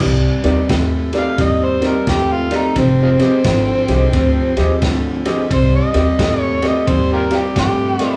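A swung shuffle at 87 BPM in 4/4 sets a mournful, soulful electric blues groove in C minor, taken from a longer performance. A vintage drum kit with a muffled, rolled-off top, dark cymbals, a tight kick and a medium-tuned snare sits beneath a woody, thumpy upright bass played pizzicato, while an electric guitar through a small old amp repeats a twangy, slightly broken-up riff. A dark, mellow concert grand piano joins at 0.4 seconds to comp in its upper-middle register. At 1.2 seconds an overdriven harmonica steps up front for a gritty, jazz-style solo, with light vibrato and tongue slaps. The chords move from Cm7 to Fm7 and back to Cm7, and the band sounds as if it is playing live together in a modest stone room.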